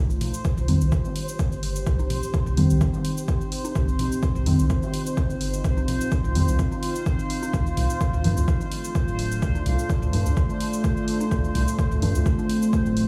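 This dub techno excerpt moves at 127 BPM in 4/4 with a light swing on the sixteenths, its punchy, up-front electronic kick anchoring the groove from 0.4 seconds, while electronic cabasa and hi-hat sit quietly on top and analog-sounding toms and congas, pumped by the sidechain and trailed by dub echo, tick along in the background. A round, square-and-sine analog bass holds the low end throughout, its sustained notes breathing with the sidechain pumping. Above it, a deep, moody ambient pad of sawtooth unison with a sub octave swells in slowly and lingers, thickened by chorus and its own reverb, moving from C minor to D minor at 7.5 seconds in C dorian. A soft, mellow chord stab enters at 0.7 seconds further back in the mix, colored by chorus, phaser and dub echo, with a filter sweep running across it. A faint bubbling texture of resonant sawtooth with random filter steps hovers on a high C, and the whole echo-heavy mix sits in a wet chamber reverb that gives the piece a deep, meditative, submerged feel.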